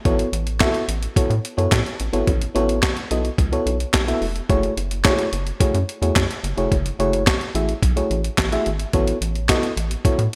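Gritty, compressed breakbeat drums with a thumpy kick, handclaps, hi-hat and a medium-tuned snare sit up front under gated reverb, entering together with a warbling, vintage FM electric piano and a rubbery, hollow square-wave bass with a resonant filter pluck. This late-night, danceable early-eighties boogie funk groove holds a straight feel, with the dark electric piano chords resting on F#m9 before moving to A69 at 8.9 seconds. Light reverb and a bright digital production frame this short cut from a longer piece.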